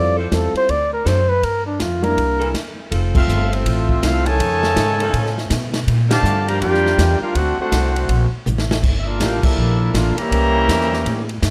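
Set in a light reverb, this energetic, brassy big band swing piece at 162 BPM in F major opens with a veiled, bucket-muted trumpet solo over intimate grand piano, growly pizzicato upright bass and a polished drum kit with dark cymbals and a punchy kick, while a distant saxophone section holds mellow chords in the background; after a break at 2.5 seconds, a bright, loose trombone section takes the second line from 3.1 seconds and a smooth-topped, warm trumpet section carries the melody from 3.2 seconds, punctuated by band accents and a drum fill at 8.5 seconds.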